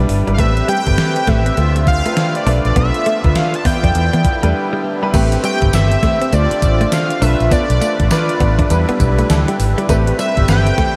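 Soaked in a huge, dreamy ambient reverb, this slick, bouncy new jack swing clip sets a bold, detuned sawtooth unison lead over a clear concert grand piano with audible action noise and analog chorus, a round, foam-muted fingered bass sitting up front, a thumpy, overdriven 80s drum machine with gated reverb snare and tambourine, a clean direct-recorded guitar riff with subtle chorus in the background, and a reedy, shimmering musette accordion holding sustained chords, with a brief break at 4.5 seconds before the second section arrives at 5.1 seconds.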